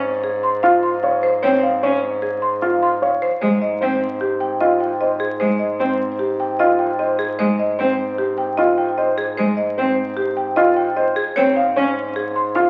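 A dark, intimate baby grand piano opens with arpeggios, its action noise audible, over a vintage-toned bass clarinet holding a low Ab2 bass, and a woody marimba with medium hard mallets enters almost at once to carry the melody. This is bright, propulsive minimalist pattern music in 5/4 at 151 BPM in Ab major, moving from Db/Ab to Ab6 and back, with a clear, bowed cello adding vibrato-tinged accompaniment from 1.4 to 11.9 seconds. The whole fragment sits in a wet recital hall reverb and carries the crackle of a very old 78 rpm record.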